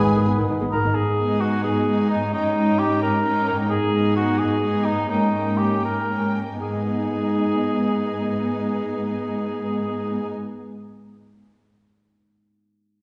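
In a lilting compound metre with a flexible, rubato pulse, this urgent and dramatic classical fragment from a longer piece slows from 3.0 to 6.6 s as its harmony shifts to D#7 over G# before returning to G# minor. A lush violin section carries the melody high in the background, its vibrato focused and smooth on top, while a second violin line sits lower with expressive, soft-attacked bowing. An up-front cor anglais, mellow and vintage in colour with light vibrato, shapes a second line, and a viola section adds close, gliding portamento accompaniment beneath it. A rich, even cello section anchors the bass, with a double bass section briefly deepening it at the outset, while an airy silver flute and a punchy bassoon appear only in the opening moment. A ringing, fingerpicked concert harp spins arpeggios throughout and is heard alone from 10.3 s. The ensemble sounds set back in a reverberant scoring stage, giving the whole a distant, softened glow.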